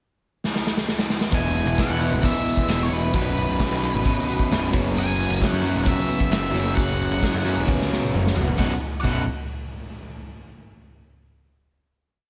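A raw, gritty garage drum kit opens this short quiet-loud alternative rock piece with a fill at 0.4 seconds, before a crunchy, ringing overdriven guitar riff, a growly fuzz bass, a dark octave-fuzz lead guitar hook and a boxy, delay-touched acoustic archtop guitar in the background join at 1.3 seconds for a bittersweet, cathartic pre-chorus that lands on a final chord at 8.6 seconds within a small, lightly reverberant room.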